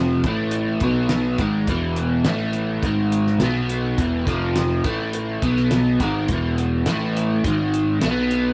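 Trippy and dark, this psychedelic rock excerpt moves at 104 BPM in a straight 4/4, cut from a longer piece and built on a riff of power chords cycling through A5, B5, E and G#5. The bright, double-tracked overdriven electric guitar sits up front, swirling through a rotary speaker, while a round, dark overdriven picked bass plays underneath in the low register. A cloth-damped, thuddy acoustic drum kit with a fat snare, tight kick, hi-hat and rolled-off top enters at 0.2 seconds, all set in a small room with light reverb.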